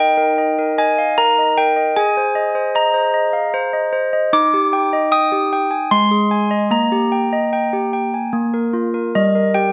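Innocent and dreamy, this short classical lullaby in a gentle triple metre features solo handbells, clear and ringing with a full, up-front presence captured by close, detailed microphones and a touch of light reverb, as they move through Eb and Ab harmonies before settling on G minor in a passage cut from a longer piece.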